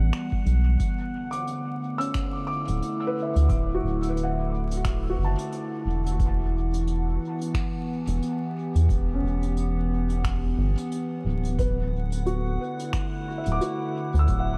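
A round, deep analog bass sits up front and carries this hazy, spacious ambient dub excerpt at 89 BPM in 4/4, with a 59% swing on the sixteenths. Around it, a warbling, nostalgic tape-like pad holds sustained chords, its detuned, wave-folded tone treated with chorus and its own reverb, while a felt-muted upright piano plays mellow, intimate arpeggios sent through dub echo. The harmony moves slowly between Em and D69. An overdriven electronic kick gives a deep analog pulse, and a distant, roomy brush kit adds finger snaps and hi-hat with a rolled-off top and its own dub echo. A glassy, bright texture of drifting overtones floats in briefly at the start and returns at 12.0 s, and a studio reverb with vinyl crackle frames the whole excerpt.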